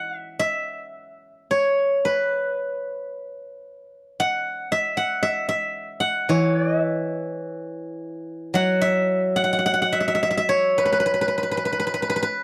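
Chinese traditional solo plucked-string music unfolds at a slow 55 BPM in 2/4, its beats uneven and pulled freely in rubato, setting a pastoral, serene mood. A single steel-string zither carries the whole piece, sounding from 0.0 to 12.4 s across a range from E3 to F#5. Played with fingerpicks, its acoustic tone is silvery and ringing, placed up front and close to the ear. The recording has a dry, close 1970s-style studio character with only a light touch of reverb. The passage moves from its opening section into a new one at 8.5 s, and it is cut from a longer piece.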